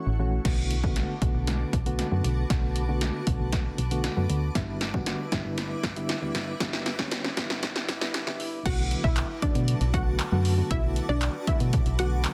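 Driving and energetic, this dance-pop clip opens on a brief break of soft, rounded electric-piano-like synth keys with chorus and tremolo over a cloudy, blurred granular pad, joined by a dark, round FM bass, all three pumping against the beat. The punchy analog drum machine enters at 0.5 seconds with kick, snare, claps, hi-hat and crash, sitting up front with a tape-warm, small-room sound, as a long build-up unfolds with a drum fill and a filter sweep. At 8.7 seconds the drop arrives, and a lush, detuned unison sawtooth pluck carries the melody through tape echo, all within a dense, heavily limited and fairly dry modern mix.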